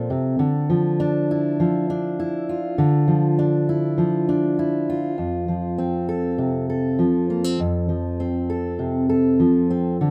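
A fingerpicked jumbo steel-string acoustic guitar, full-bodied and up front with light reverb, plays alone through this uplifting, nostalgic folk excerpt in F major at 100 BPM, moving from a Dmadd9 chord to F at 5.2 seconds in a rough home demo mix.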